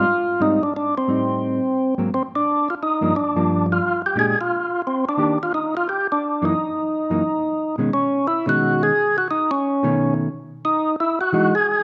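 Set in a large studio with a moderate reverb, this soulful, greasy jazz excerpt swings at 176 BPM in 4/4. A percussive tonewheel organ carries the melody up front, its lightly overdriven tone full of key click and second-harmonic percussion turning through a slow rotary speaker, while a dark, clean hollow-body electric guitar, also up front, fingers the accompaniment. The harmony moves through rich seventh and extended chords before settling into B major at 7.9 seconds, with the guitar dropping out at 11.5 seconds and the organ at 11.8 seconds.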